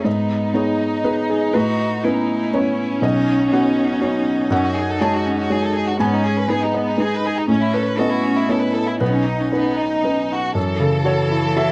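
A dry, close studio sound in a 1970s style frames this melancholic, fragile neoclassical piece for piano and strings, cut from a longer work and moving at 121 BPM in a rubato 3/4 in F# dorian. A felt-muted upright piano sits up front with a soft, mellow, intimate tone and audible action noise, carrying the accompaniment through a cycle of G#m, Aadd9, Badd9 and F#madd9 that settles on F#m7 at 10.6 seconds. Over it, a rich chamber violin section sings the bowed melody with vibrato and a smooth top, while a single clear cello traces a focused second line beneath.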